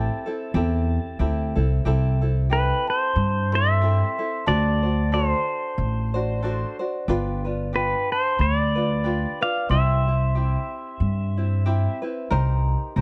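Dreamy and sunny, this Hawaiian fragment in C major sways at 92 BPM with a gentle swing, as a bright, twangy electric pedal steel guitar sings the melody up front with slide and volume swells over light, fingerpicked tenor ukulele and a woody, thumpy pizzicato upright bass, while a delicate, bell-like celesta slips into the background at 2.5 seconds, the whole held in light reverb and a dark, warm production.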